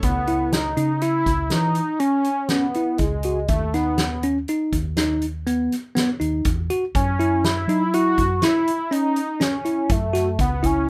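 A detuned sawtooth lead with an added fifth, hollow and bold under chorus and phaser, opens this driving, brooding progressive instrumental in 7/4 at 122 BPM alongside a round, dark hollow-body fingered bass and a distant, roomy soft-mallet kit with a fat snare and punchy kick, while a bell-like tine electric piano enters at 0.3 seconds with clean, up-front arpeggios over C#m7, B/D# and F#7(no3), heard through a rough home-demo mix with light reverb.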